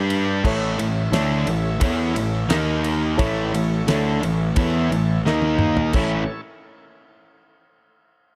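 A small room sound frames this driving, confident classic rock fragment in A mixolydian at 87 BPM, cut from a longer piece, where a fuzzy, punchy overdriven bass sits up front beneath two picked guitar riffs, one bright and distorted, the other sludgy and overdriven, both set back in the mix. A dry, damped 70s drum kit with a fat snare and tight kick drives the straight 4/4 feel and plays a fill from 5.3 to 5.9 seconds, while a woody, boxy upright piano with short sustain adds background accompaniment. A very quiet, shouting tonewheel organ holds sustained chords through a slow rotary speaker, as the harmony moves between A and D#5.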